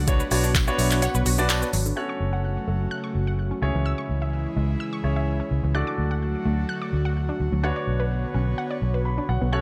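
An airy, breathy pad opens this bittersweet yet confident dance-pop excerpt at 127 BPM, its sustained chords pumping against the sidechain alongside a lush, warbling unison pluck that spins arpeggios through a dub echo. A dark, round, foam-muted electric bass sits up front from the start, and a clear, polished baby grand piano adds accompaniment and fills. For the opening two seconds, a smooth R&B drum kit with a knocking kick, handclaps, hi-hat and shaker drives the groove, joined by a very quiet, jingly tambourine. The kick drops out at 1.0 seconds, and from 2.0 seconds the drums fall away, leaving the pad, pluck, bass and piano to carry the harmony through F#m, C#m and D before returning to Bmadd9. Light reverb and a digital ambience give the mix a gentle sense of space.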